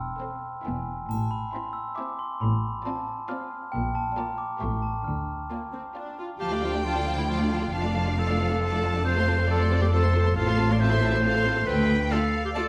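Cinematic, whimsical film cue in 3/4 at 136 BPM, mischievous and sneaky, moving from A minor into D minor at 3.7 s and cut from a longer piece. A mellow, bell-like glockenspiel with rubber mallets carries the opening melody over lush, vibrato-rich violin sections playing the melody and a second line, a smooth viola section, a focused, distant cello section and a double bass section, with a faint triangle touch in the background. At 6.4 s a bright, vintage-toned clarinet steps up front with its own line as the strings continue, all set in the generous reverb of a scoring stage.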